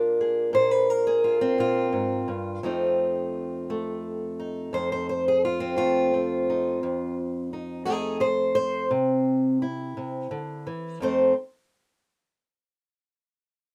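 A boxy, old ladder-braced acoustic guitar sits up front, fingerpicked alone with audible finger squeak, in a swaggering, gritty acoustic country blues in F mixolydian. The slow 12/8 groove moves at 57 BPM through Bb7, F7 and C, and the guitar's part ends at 11.3 seconds as the harmony lands back on F7. Light reverb surrounds the playing in this fragment cut from a longer piece.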